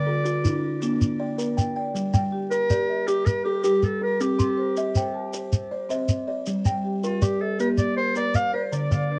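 A distant, roomy clarinet carries the melody in a classical style over this rippling, hypnotic cut from a longer southern African traditional piece, built on an mbira-style interlocking cycle. The tempo sits at 106 BPM in a straight 12/8 with G equiheptatonic tuning, and tape echo trails the clarinet's line. Beneath it, a buzzing kalimba with a woody, hollow-box tone and soft fingertip plucks spins dark, mellow arpeggios. A marimba played with medium mallets adds further arpeggios, and both tuned parts carry the colour of cassette tape. A grainy, close shekere enters at 0.3 seconds and sits up front as the percussion, while the harmony moves from Dm and Bb to Gm at 1.9 seconds, then C, Gm and Bb, all within a moderate studio ambience and the dulled top end of a home cassette recording.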